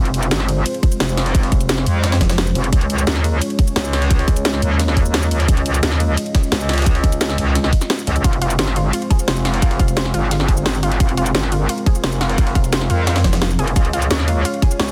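A straight 4/4 drum and bass groove drives this aggressive, dark cut of technical drum and bass, with a tight, up-front electronic kick layered over a produced kit of cracking snare, hi-hat and shaker, while a very quiet, gritty jungle-style sampler kit adds a pitched-up, high-tuned snare and ride cymbal underneath. A metallic FM wobble bass dominates the low end from the start, saturated, bright and compressed with overdrive, chorus and sidechain pumping, and a second wobble bass layer stabs in briefly at 2.2 seconds and again near 13.2 seconds. Behind them, a deep, moody analog pad of detuned sawtooth and triangle with a sub octave holds slow-attack chords, pumping against the kick as the harmony moves between Fm and Db. At 8.2 seconds a round, nasal analog pluck enters with wave-folded arpeggios, its short decays echoed by digital delay. The mix is dry and dense, pressed into a heavily limited modern master that keeps the pressure relentless throughout.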